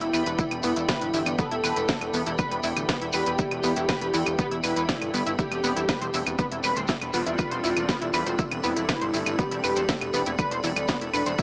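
A punchy, up-front electronic kick arriving at 0.4 seconds drives this dark melodic techno excerpt, where a fat, detuned analog lead with vibrato and tape echo carries the melody over a tight, nasal sequenced synth arpeggio with chorus and cassette-tape grit, a plucky, ring-modulated analog bass, a cracking snare with smooth hats and claves, a grainy, close shekere, and two background pads (one resonant and sweeping, one a blurred granular cloud with its own reverb), all heard through a small-speaker sound as the chords move from Em7 to Csus2 at 5.4 seconds.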